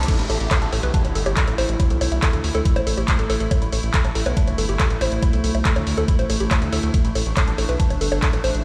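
A warbling, detuned wavetable pad, a woody wave-folded pluck riff with chorus and delay, a round, deep analog bass and a techno kit of bongos, handclaps, crash and hi-hats open this alien, driving psychedelic trance excerpt together, with a background riser and downlifter ending by 3.5 seconds as a knocking, tape-toned electronic kick lands up front at 0.1 seconds to launch the drop, the pad and pluck pumping against it, all heard through a big sound system in a bare stone room.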